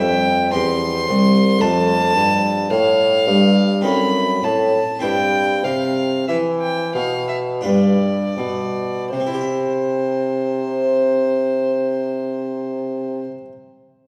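Classical, baroque-style sonata movement with continuo in triple time, radiant and dance-like, cut from a longer piece. A rich, reedy gut-string violin played by one bowed player sits close and up front with the melody, over a full, plucked Italian-style harpsichord on two sets of strings and a warm solo bassoon with light vibrato carrying the bass, all heard from further back in a reverberant recital hall. The music slows through the first 9.1 seconds, arriving on a C major chord as a brief second section begins, and the harpsichord rings on alone until 13.5 seconds.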